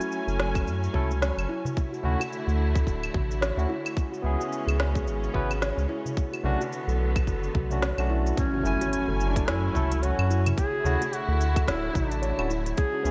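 A bright, 1980s-style digital sheen and a lush hall reverb surround this hypnotic, mystical stretch of organic downtempo, cut from a longer piece and carried by a gently swung groove. A barky tine electric piano and dark, con sordino strings hold the chords, while a steel tongue drum rings out pure arpeggios through delay and shimmer reverb. Up front, a tight, overdriven electronic kick and a deep, round sine sub bass anchor the low end, and the piano, strings and bass all pump with sidechain compression. An overdriven kit of woody snare, crisp hats, claves and shaker sits in gated reverb, with a clay-shelled darbuka in the background. The kick drops out just before 8.4 seconds, when a background impact lands and a solo duduk enters with vibrato and scooped, folk-style notes. The harmony drifts through minor and major seventh chords, returning to the opening chord as the duduk sings.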